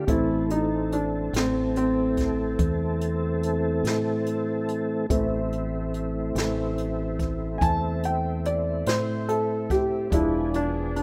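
A rough home-demo mix bathed in studio reverb opens this brief, soulful cut from a slow blues in A minor, brooding along at 48 BPM in a straight 12/8, tuned to A4 = 435 Hz. A warm, vintage grand piano sits up front and carries a solo across the whole passage, resting on a long Am chord that arrives at 0.1 seconds. Beneath it, a smooth, clean tonewheel organ holds sustained chords with chorus vibrato, audible key click and a slow rotary speaker. A punchy, up-front fingered electric bass, direct and amped, anchors the low end, while a jazz kit played with brushes adds a natural studio-room feel, with a medium-tuned snare, hi-hat and a boomy kick. At 10.1 seconds the harmony turns to E7b9 as a horn section with light vibrato and a smooth top slips in quietly in the background, voiced in octave doubling.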